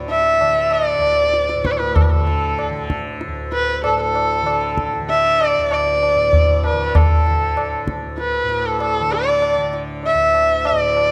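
Longing and solemn, this Hindustani classical passage moves at 96 BPM in a straight 4/4 and is cut from a longer piece, with tuning set to A4 = 438 Hz. A softly plucked tanpura sustains a buzzing, shimmering drone from D2 to D3 beneath everything, sitting well back in the blend. A single bowed sarangi carries the melody between A4 and E5, up front and expressive, its rich tone full of vibrato, portamento and gliding lines, with sympathetic strings ringing around it. A high-tuned tabla keeps time close by, ringing and acoustic, sitting between the sarangi and the drone in level. Close, detailed microphones capture the playing, and a moderate scoring-stage reverb with a 1.6-second decay gives the brief passage a sense of space.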